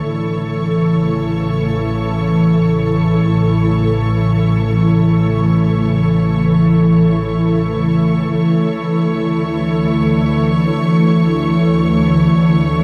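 An ethereal, airy pad sits up front in this ambient piece, holding sustained chords with a slow attack, long release and a mellow, detuned sawtooth shimmer thickened by ensemble chorus and its own built-in reverb. The music floats in free time, tuned to A4 = 443 Hz, resting on an A chord before shifting to Dsus2 at 8.4 seconds. Beneath it, a dark, woody double bass section bows lush, symphonic low notes with vibrato, sitting well back in the mix. High above, a clear, smooth studio violin section adds a bowed, even texture with vibrato, fading in gradually across the whole 12.8 seconds. A huge, wet ambient reverb with a 7.8-second decay surrounds the performance, lending the warm, luminous mood a vast, suspended quality in this short cut from a longer piece.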